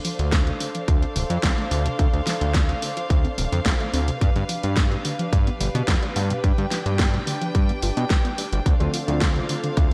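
Bright, lightly reverberant 1980s-style digital production frames this sensual, cosmic nu-disco excerpt at 108 BPM in D dorian, where a punchy, up-front electronic kick and a pop kit with fat snare, warm hats and gated reverb play alongside a thick, detuned sawtooth bass with tube saturation, while a round analog pluck arpeggio with chorus and delay filter-sweeps in the background, a dark, intimate sul tasto string section pumps with gritty 12-bit sampler texture over Dm7 moving to G7, and a mellow, dark grand piano with chorus slips in at 8.8 seconds.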